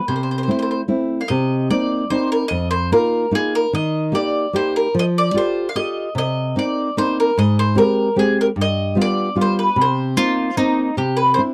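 A bowl-back mandolin opens this lively, sunny Italian serenade in C minor, picking the melody on its double strings from G4 up to F5, and a fingerpicked nylon-string guitar joins almost at once with a classical accompaniment reaching down to F2. The tune moves at 149 BPM in a straight 3/4 lilt, setting a brief opening phrase before a longer second section begins at 1.3 seconds. The harmony travels through Cm7, F7sus4, Eb, Fadd9, Abmaj7 and G7 before settling on Cadd9 at 11.0 seconds. Around 10.2 seconds a second, brighter mandolin line slips in briefly beneath the lead, also picked on double strings. All three parts sit up front in a dry, close studio sound with a 1970s character and a light touch of reverb, the warm guitar cradling the mandolin in what is clearly a cut from a longer piece.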